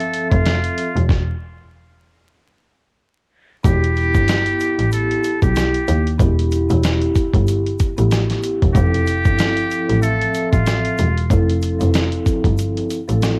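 A buzzy, metal-muted trumpet carries the melody in a breathy jazz style, its thin, punchy tone marked by light vibrato and scooped notes, filtered and tape-worn with an analog delay trailing behind it until it drops out at 11.3 seconds. This reflective yet tough boom-bap hip-hop excerpt rides a swung groove from a gritty, compressed sampler-style drum kit, with a thumpy kick and fat snare sitting up front. A bowed double bass, clear and earthy with transformer saturation, anchors the low end. Beside it, a vibraphone played with soft mallets rings out in a mellow, metallic, band-limited voice with slow motor vibrato, moving from Fmaj7 to Em and back. The band halts for a stop early on, and a very quiet, grainy egg shaker joins at 3.6 seconds before a closing break. Vinyl crackle and a small-room cassette ambience give the whole recording a dusty, homespun vintage feel.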